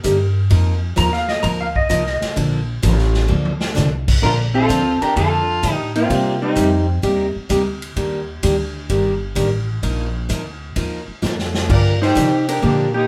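Down-home and cheerful, this western swing country excerpt opens with a dark, fingerpicked lap steel playing a brief slide solo over a bright, full-bodied jumbo acoustic guitar, a woody, growly pizzicato upright bass and a swinging big-band drum kit with a punchy kick and a couple of fills. At 4.2 s a clean hollow-body jazz guitar takes the up-front melody, joined by a clear, slightly boxy fiddle with light vibrato, and both return at 11.7 s over jazzy seventh chords. The band sounds like it is playing live together in one room, with a wet studio reverb.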